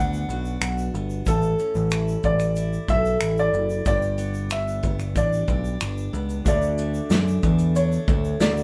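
This acoustic pop excerpt opens with a dark, woody upright piano carrying the melody over a bright, full-bodied picked steel-string acoustic guitar with audible finger squeak and a round, overdriven electric bass placed up front, moving from Bm through A and G at 92 BPM in D major. A grainy tube shaker sits in the background from 0.1 seconds, and a natural, small-room country drum kit with a punchy kick, medium-tuned snare, finger snaps and shaker joins at 0.3 seconds, giving the heartfelt, carefree mood a live-band-in-one-room feel with moderate reverb. At 6.4 seconds a very quiet concert grand piano with audible action noise and long sustain adds intimate accompaniment as the harmony settles on Dadd9.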